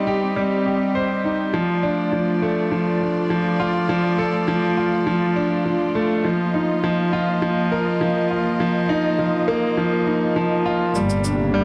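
Hypnotic and intimate, this piano and strings electronica moves at 102 BPM in a straight 4/4, cut from a longer piece. A brilliant concert grand sits up front, repeating a riff with deep bass and a delay on it, while a chamber string section bowed sul tasto with light vibrato holds sustained chords softly beneath, filtered to dull its top. The harmony moves from Cm to Dm, then settles on Ebsus2 before turning to Gm at 11.0 seconds. At that moment a focused, distant bowed double bass section enters on a low G, joined by a produced electronic shaker. A faint electronic riser follows at 11.4 seconds. A lush hall reverb and dark, warm production give the sound a close yet spacious glow.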